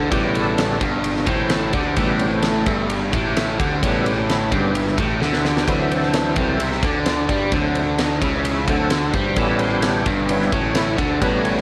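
Swaggering and raunchy, this blues rock and southern rock excerpt struts at 130 BPM in A mixolydian, with a gritty overdriven tonewheel organ soloing throughout on thick sustained chords through a slow rotary speaker and chorus vibrato. A biting, double-tracked guitar riff sits up front over a growly fuzz bass, while a huge arena drum kit with punchy kick, fat snare and ride cymbal drops in a fill at 5.2 seconds. The changes move from A7 to D7 and Dmaj9 before returning to A7, wrapped in moderate spring reverb and small room ambience.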